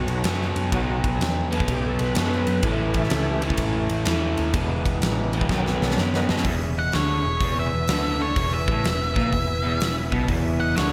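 A crunchy, double-tracked overdriven guitar riff drives this gritty, raunchy blues-rock and southern-rock excerpt, backed by a punchy, fat-snared arena drum kit, a dark, foam-muted picked bass and a reedy tonewheel organ with key click and fast rotary sitting in the background, until after a drum fill a dark octave-fuzz lead guitar enters at 6.8 seconds alongside a lo-fi second line from a small cranked amp, all set in a lush hall with a big arena sound.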